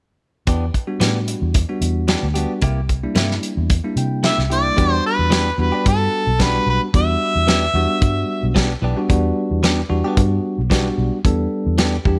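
Straight-eighth soul blues with a smoky, mournful mood, cut from a longer piece, where a fat-snared, tight-kicked soul drum kit sits up front over a dark, round, foam-muted fingered electric bass, while compressed clean electric guitar stabs and a bell-like tine electric piano, with its fill from 3.7 s, fill out a light reverb until a bright, overdriven harmonica takes the solo melody from 4.3 s to 8.5 s with light vibrato and scooped notes.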